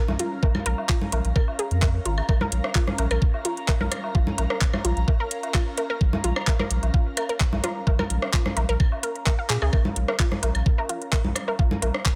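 Minimal techno with a clinical, quirky mood, built on a straight 4/4 pulse and a single B-flat minor chord, cut from a longer piece. A knocking, tape-warm electronic kick sits up front, joined by a layered garage kit of handclaps and metallic hi-hats, while electronic congas, woodblock and rim clicks, re-recorded in a large room, add a roomy patter. Underneath, a deep, saturated sub bass with a fast attack holds sustained notes and pumps with the sidechain. The hook is a juicy, squelchy blip pluck, resonant and bright with a short decay, its chorus and dub echo scattering the figure behind it as it ducks to the sidechain. An airy, breathy pad with slow attack, chorus and phaser drifts softly in the background and pumps in time, and a drum fill arrives at 9.5 seconds in the digital ambience.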